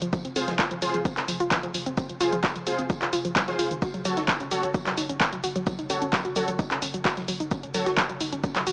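Driving peak-time techno with an intense, dark mood, heard in a short cut from a longer piece. A woody, wave-folded pluck carries the riff throughout, its warbling vintage tone thickened with chorus, tube saturation, digital delay and sidechain pumping, while a growling, buzzy 808-style bass sits in the background under a low-pass filter. An up-front, tape-warm analog drum machine supplies handclaps, hi-hat and shaker, with pumping on the hats and percussion, joined by a layered, punchy electronic kick re-recorded in a small room and a very quiet acoustic tambourine and snare. From 0.4 seconds an aggressive, bright rave stab built from detuned sawtooth unison with a sub octave cuts through, treated with chorus, dub echo, cassette-tape colour and its own reverb. A filter sweep runs across a synth arpeggio sound the whole way through, and the harmony moves from F minor to G-flat minor at 3.8 seconds. 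The mix has a light reverb and a small-speaker character.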